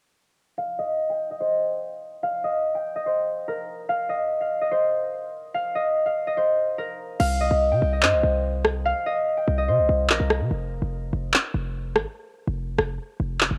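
A homemade cassette sound with light reverb frames this ominous, cold half-time drill excerpt, where a ringing, fingerpicked concert harp melody, low-pass filtered and sweeping, plays alone from 0.6 seconds until a punchy, heavy 808-style bass with a sine tone, a noise layer, a fast attack and a decaying tail arrives at 7.2 seconds alongside up-front electronic drums of crash cymbal, handclaps and rim click, with the hi-hats muted and a break setting in at 10.5 seconds.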